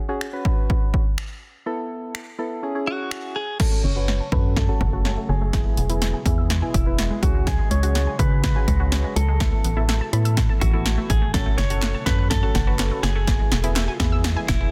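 A punchy, up-front house drum kit drives this energetic dance-pop excerpt at 124 BPM in F# minor, its snare gently clipped and its hats tape-warm, while soft, round electric-piano-like synth keys with chorus and tremolo carry the harmony from the start through chords such as C#sus4, Asus2 and F#m. During a break, a clean, direct-recorded electric guitar takes the melody with delay from 2.9 seconds, joined by a hollow, organ-like FM bass and a bright, detuned unison pluck playing pumping arpeggios in the background, with a glassy, ethereal FM pad sustaining chords very quietly beneath. From 3.6 seconds the rest of the excerpt is a long build-up with a drum fill and filter sweep, and a crisp group handclap appears briefly from 11.8 seconds in a dense, heavily limited mix with little reverb.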